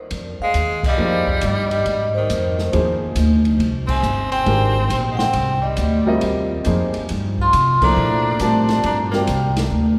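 Opening on a woody, thumpy pizzicato upright bass and a dark, boomy open jazz kit with dark cymbals, this cool, intense modal jazz excerpt in F dorian swings at 138 BPM in 4/4 as a mellow, airy vibraphone with soft mallets and medium motor vibrato carries the melody, an edgy, forceful tenor saxophone with scooped notes and vibrato adds a punchy second line, and a natural-sounding upright piano enters at 1.0 seconds to comp over Fm9 moving to Gm9, with band accents at 0.8, 3.8 and 7.7 seconds, all bathed in a wet church reverb.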